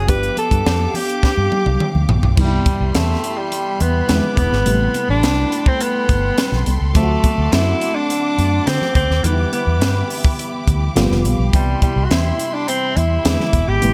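Polished 1980s jazz-funk pop with a breezy, upbeat feel, cut from a longer piece, where a breathy, intimate alto saxophone carries the melody over a dreamy FM electric piano with a soft pad layer, colored by phaser and subtle chorus, and a lush string section holding sustained chords. A dark, foam-muted fingered electric bass and a punchy fusion drum kit with gated reverb and a high-tuned snare sit up front, while very quiet, damped congas add a thin, bright accent. A drum fill from 1.2 to 2.4 seconds leads into the main passage, which moves through jazzy seventh and ninth chords such as Cmaj7, Am9 and D7.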